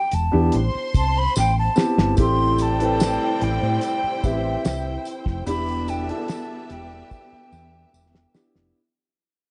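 A straight 4/4 groove at 73 BPM carries this smooth, bittersweet 1970s-style soul fragment in A minor, where an airy, hollow silver flute leads the melody over lush bowed strings with vibrato and portamento, a round, up-front hollow-body bass, a cloth-damped, thuddy drum kit with a fat snare, tight kick and fills, a jingly tambourine and a mellow concert grand with audible action noise, while a horn section with light vibrato adds octave-doubled stabs from 2.2 seconds as the fade-out begins over Am7 and Em7, set in a small room with light reverb.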